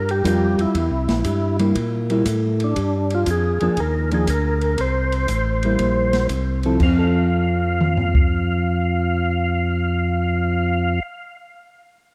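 A dreamy, reverb-soaked hall sound frames this bluesy, swinging soul jazz organ trio excerpt in F major at 119 BPM, where a warm, percussive tonewheel organ carries the melody with light overdrive, chorus vibrato, a slow rotary speaker and analog delay, while a second, thick tonewheel organ with audible key click holds down the bass line. A dark, clean hollow-body electric guitar supplies fingered accompaniment over a Gm7 to C7 vamp that settles on F at 6.8 seconds, and an acoustic jazz kit with dusky cymbals and a punchy kick swings up front until it stops at 8.2 seconds.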